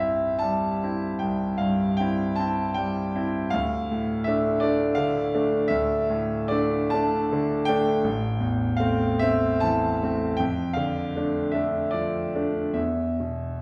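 A bright concert grand piano carries this melancholic, wistful romantic nocturne alone, its brilliant treble and deep bass ringing with long sustain over a slow, rubato 12/8 pulse of about 44-56 BPM in dotted quarters. Cut from a longer piece, the harmony drifts from C through D minor to A minor, touching D minor over F before resting on an open fifth on E at 12.8 seconds. The instrument sounds open and close at hand, yet a wet recital hall reverb places the listener further back in the room.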